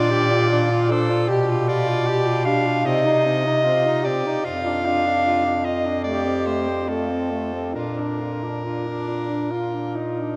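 Classical and lyrical, this short excerpt for single-reed quartet moves in a rubato 4/4 at roughly 67-78 BPM in Bb major, with a warm feel. A mellow, up-front soprano saxophone carries the smooth melody over a clear, close-miked alto saxophone second line, while a vibrato-tinged tenor saxophone sits distant in the room as accompaniment and a soft-attacked bass clarinet anchors the bass. All four play from 0.0 to 10.4 s through a vast, echoing cathedral reverb, the harmony moving from Bb through G7/B, Cm, Dm/F and F before coming home to Bb.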